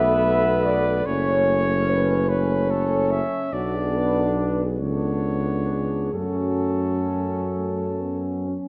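A full brass band enters together at the opening of this short, hymn-like classical passage, its slow 6/8 pulse stretched and eased by rubato into a yearning, elegiac mood. A warm, present solo cornet carries the melody, while a mellow, distant French horn section shapes a tight second line just beneath it. A bright trombone section with light vibrato fills out the accompaniment, joined by a roomy euphonium that sits in the background. Up front, a solo tuba anchors the low end, its tone touched with a gentle vibrato. The harmony moves from Bm7 to F#m, passes through Bm and a rich Bm13/C#, and settles back on F#m as the cornet falls away at 8.2 seconds, the euphonium holding on until 8.7 seconds. A wet scoring-stage reverb and a dark production give the ensemble a solemn glow.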